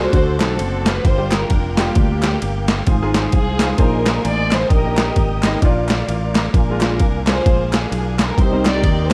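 A swung 4/4 groove from a gritty, overdriven sampler-style drum kit, with a thumpy kick and high-tuned snare up front, drives this short, reverent and hopeful slice of uptempo gospel, joined by a punchy fingered electric bass and, from 0.4 seconds, a hollow, vintage group handclap set back in the mix. A reedy chamber string section with a gut-string tone carries the melody over a clear concert grand piano, which adds a brief fill at 5.9 seconds, while a smooth tonewheel organ holds sustained chords with chorus vibrato, key click and a stopped rotary speaker. The dark, dry production frames the chords as they move from D7 through Gm7 and Bb to a closing Cm7.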